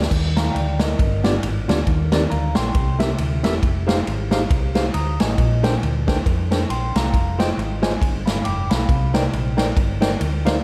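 Swinging lightly on the eighth notes, this short, reverent yet jubilant uptempo gospel cut pairs a punchy, up-front big-band drum kit of crash, ride, snare and kick with a dark, round hollow-body fingered electric bass and a clean tine electric piano carrying slapback echo, all bathed in a lush hall reverb that gives a big arena sound as the chords move from Ebmaj9 through Fm9 and Bb13 to a closing Cm9.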